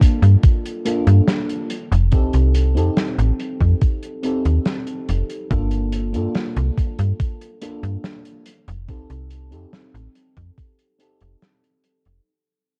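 Dark, cassette-toned production with studio reverb frames this woozy, melancholic vaporwave excerpt at 71 BPM, where an overdriven, thumpy electronic kick and a snappy, metallic slap-like FM bass with tube saturation sit up front over a small-room soul kit of hi-hat and snare with a rolled-off top, while a soft, round FM electric piano, lush with chorus and tape echo, moves between Gm7 and F7 as everything fades out across the excerpt's 12.3 seconds.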